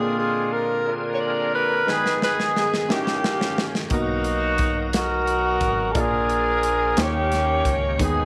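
A breathy, whispered tenor saxophone opens this short cut from a slow, solemn gospel piece in a straight 6/8, carrying the soulful melody with soft attacks, jazz-style vibrato and a touch of tape echo, alongside a loose, vintage-toned horn section that sits up front with light vibrato. Beneath them, a clear baby grand piano plays accompaniment with a natural, short-sustained tone, while a bright, shouting tonewheel organ holds sustained chords in the background, lightly overdriven and colored by chorus vibrato and a slow rotary speaker. At 1.9 seconds a polished, airy studio drum kit arrives with a fill, its punchy kick, medium-tuned snare and hi-hat placed up front. A deep, round, dark fingered electric bass joins at 3.9 seconds as the harmony settles from A#9 and G#m/D# through D#7b9 onto Bmaj7, later moving to A#7 and D#7. A moderate spring reverb lends the whole blend an intimate, churchy glow.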